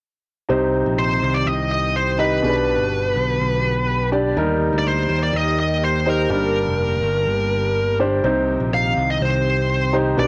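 A straight 4/4 pulse at 124 BPM drives this dramatic, bittersweet piano-driven pop piece in C minor, cut from a longer work. A clear, natural grand piano carries the accompaniment up front from 0.5 s, alongside a bright, growly picked electric bass with a direct, modern edge. In the background, an airy, breathy pad with a slow attack and long release holds soft sustained chords, its detuned tone thickened by chorus. At 1.0 s a high-gain lead guitar enters with the melody, distorted and picked. The harmony moves from Cm through G, Eb and Gm before returning to Cm, and the whole take has the hazy character of a home cassette recording bathed in a moderate spring reverb.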